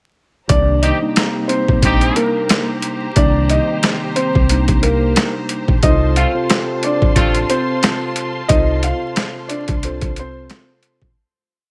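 From 0.5 s, a gritty, overdriven sampler-style drum kit with a thumpy kick and backbeat snare sets a dark, reflective boom-bap hip-hop loop at 90 BPM in C dorian with a swung 16th feel. Alongside it, a pizzicato upright bass plays a deep looped line, a smooth, vintage upright piano repeats a short melody doubled in octaves, and a mellow tine electric piano adds chopped chords; a lush, distant bowed string pad sits behind them, and vinyl crackle and light studio reverb add atmosphere. Punchy horn stabs with vibrato and digital delay appear from 0.8 s to 7.4 s as the harmony moves from Cm7 to F, before a fade-out from 8.5 s.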